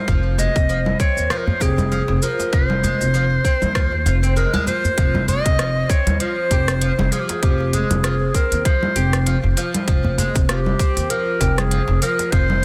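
A breathy, close-miked clarinet opens this mystical organic downtempo excerpt at 0.0 seconds, its jazz-style subtone lead full of vibrato and scooped notes, alongside a bright, plectrum-plucked fretless oud playing double-string arpeggios, both carrying digital delay. From 0.1 seconds, a woody, dark pizzicato upright bass with sidechain pumping and a tight, tape-warm electronic kick sit up front, while a crisp electronic kit of congas, hi-hat, rim click and shaker adds soft clipping on the snare, and a deep djembe played with soft hands murmurs in the background from 0.4 seconds. The harmony moves from F minor to an open F power chord at 5.0 seconds under light reverb and studio ambience, in a dense, heavily limited modern master.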